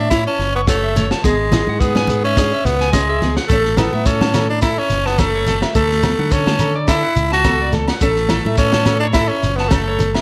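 Highlife guitar band music, carefree and sunny at 106 BPM in A major with a light swing: a raspy, growling tenor saxophone carries the melody up front with light vibrato, while a twangy, slightly broken-up electric guitar picks arpeggios over a round fingered electric bass and a gritty, saturated breakbeat kit with a high-tuned snare and tight kick; a bright, fingerpicked flamenco guitar, grainy shekere and damped congas sit in the background, and ringing agogo bells join at 3.8 seconds.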